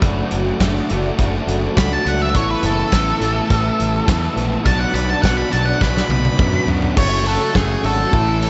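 This excerpt from a longer indie rock piece has a big arena sound, with a lush hall reverb, a touch of small-room ambience and a rolled-off top end. The mood is wistful yet carefree, in a straight 4/4 that moves through D/F#, Asus2, Bm and F#m. A punchy fuzz bass up front and a loose, mid-forward acoustic drum kit with dark cymbals, a tight kick and a medium-tuned snare carry the groove under two overdriven guitars playing riffs in the background: a lo-fi garage part with chorus and slapback echo, and a sludgy, lower part that also has slapback. An octave-fuzz lead guitar, distorted and with slapback echo, comes in at 1.8 seconds for a solo that carries on through a drum fill at 5.8 seconds. Very quietly beneath, a reedy tonewheel organ holds sustained chords with key click and a slow rotary speaker, and at 7.0 seconds, as the section changes, a vintage, bell-like glockenspiel played with soft plastic mallets adds a ringing second line high above.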